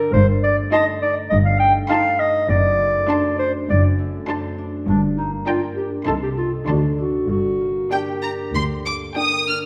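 A mellow clarinet sits up front from the start, playing a second line between D4 and G5 with a soft attack and a distant, roomy, classical solo tone. This excerpt of a cinematic film cue is playful, whimsical, quirky and sneaky, set in G minor at 101 BPM in 4/4 with uneven beats. A concert harp supplies fingerpicked, ringing arpeggios, while lush cello and double bass sections carry the bass line, the cellos sitting in the background with portamento and the basses entering with a soft attack. At 0.7 s an expressive violin section takes the melody high up, close and up front, joined by a second violin section with a smooth, even top and a dark viola section in accompaniment. The harmony moves from Am7b5/G through D7/F# to Gm, then Adim/C and D7 before returning to Gm at 7.3 s, and a moderate scoring stage reverb of 1.6 s surrounds the ensemble.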